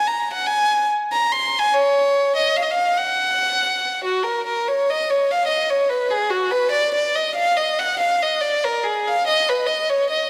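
Musette in 3/4 at 143 BPM, played with a rubato feel, whirling and bittersweet in mood, moving from F# major into Eb minor at 4.2 seconds. A single violin carries the whole fragment as the solo voice, its rich, intimate tone shaped by light vibrato, a soft attack and an airy sul tasto bow. The violin sits close and up front within a lingering scoring-stage reverb, and the passage is cut from a longer piece.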